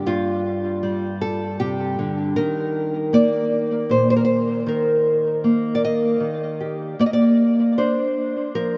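Melancholic and haunting, this short folk excerpt cut from a longer piece features a solo fingerpicked nylon-string guitar in an unhurried 3/4 at 78 BPM, moving from Gm7 to Eb and arriving on Bb at 7.0 seconds. The guitar sounds small and warm yet sits up front, its acoustic tone touched by a subtle chorus and analog delay across a range from G2 to Eb5. A huge ambient reverb with a 4.0-second tail soaks the whole mix in a dreamy haze.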